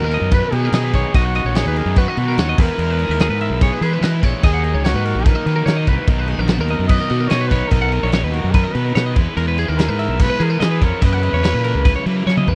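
A raspy, growling trumpet leads this bright, intricate math rock and midwest emo excerpt, carrying a jazz-style melody with light vibrato, breathy scooped notes and a slapback echo, sitting at a roomy distance. Alongside it, a twangy twelve-string electric guitar picks clean, compressed arpeggios, while a double-tracked, overdriven stack guitar plays a riff in the background. Up front, a fuzz-laden fingered electric bass holds down the low end, and a loose indie drum kit enters almost at once with a fat snare, punchy kick, dark cymbals and toms in a saturated, gritty, rolled-off sound. In straight 4/4, the harmony moves through Bmaj7, Emaj7 and D#m7 before returning and settling on F#7sus4. The trumpet stops at 12.2 seconds, and a drum fill follows at 12.3, all captured in a dry, close recording with a 1970s studio character.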